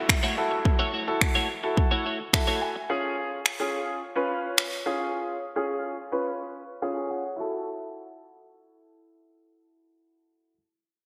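A bright 1980s-style digital production bathed in lush hall reverb carries this energetic, driving dance-pop excerpt at 107 BPM in F# minor, where a polished, short-sustain grand piano with analog chorus, sidechain pumping and a low-pass filter plays chords from F#m7 to C# through 10.5 seconds and adds fills, a bright, twangy twelve-string electric guitar picks a clean, compressed riff until 2.8 seconds, a punchy, layered electronic kit of kick and finger snaps drives up front until 4.7 seconds, and a very quiet downlifter opens beneath a filter sweep.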